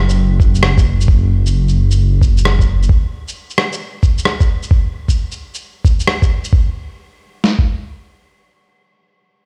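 Heard through a big sound system in a bare stone room, this brief cut of melancholic, nocturnal future garage rides a swung 4/4 groove with a muffled, pitched-down character. A dark detuned saw bass opens the piece, deep, rumbling and saturated, pumping with sidechain until 2.9 seconds. Up front, a compressed electronic shaker and rim click run to 6.5 seconds, while a lo-fi sampler-style kit with a thumpy kick and medium-tuned snare carries on to 7.7 seconds.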